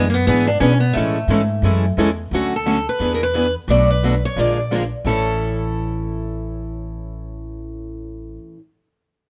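A picked parlour steel-string guitar carries the melody up front in this charming, playful jazz manouche excerpt, swinging at 176 BPM in A major over changes from E7 and Amaj7 through Bm7 and Bb7 before settling on A at 5.0 seconds. Underneath, a boxy archtop with old strings and a bright, fresh-strung steel-string guitar with audible finger squeak play the accompaniment, while a thumpy pizzicato upright bass with woody gut strings sits up front as well. The sound is close and detailed, with a touch of light reverb.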